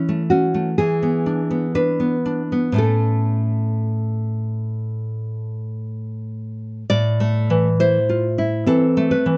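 Serene and tender, this short passage from a longer romantic guitar duo unfolds with a gently rubato feel in four. One fingerpicked nylon-string guitar carries the melody in a deep, full-bodied classical tone, while a second nylon-string guitar sits up front with fingerpicked accompaniment that spans a broad register. Close, detailed miking and little reverb keep both guitars intimate, and at 6.9 s the harmony turns from major to a minor chord as a new section begins.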